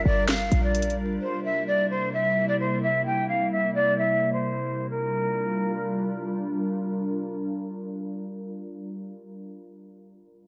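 Vinyl crackle and a low-pass filter give this brief cut from a longer piece a dusky, worn sound, set in a lush digital hall reverb with a moderate tail, while a filter sweep runs through the opening 4.9 seconds. It is eerie, brooding hip hop in a trap style at 130 BPM in 4/4 with a half-time feel, rooted in G dorian and tuned slightly below standard pitch, moving from Gm7 to C7 and back to Gm7 as the second section begins. A glassy FM pad carries sustained chords throughout, ethereal and warbling with a vintage character, a slow attack and long release, and its own chorus and reverb. Above it, a breathy jazz flute with a hollow, straight tone and soft attack sings the melody until 6.2 seconds, sounding distant despite sitting up front. Underneath, a punchy 808-style bass with a sine body, a noise layer and a fast, decaying attack hits briefly at the start, and an electronic trap kit of handclaps, metallic hi-hats and a sharp snare sounds only between 0.3 and 1.0 seconds.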